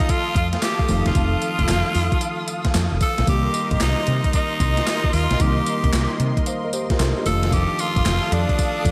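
A dreamy hall reverb soaks this bouncy, punchy new jack swing cut, an R&B groove at 113 BPM in 4/4 with a 65% swing on the sixteenths, taken from a longer piece. Up front, a gated 80s digital drum machine hits hard with a thumpy kick, an overdriven snare drenched in gated reverb, and handclaps, hi-hat and tambourine. A dark, growly fretless electric bass with a round, hollow-body tone joins at 0.4 s. A worn, slightly out-of-tune tine electric piano with a subtle chorus plays the accompaniment over F7 and Cm7 chords, while a thick, nasal sawtooth pad with detuned unison voices and a soft attack holds bright sustained chords. The raspy, gritty tenor saxophone carries the melody as a close-miked pop-style solo, full of vibrato and scooped notes.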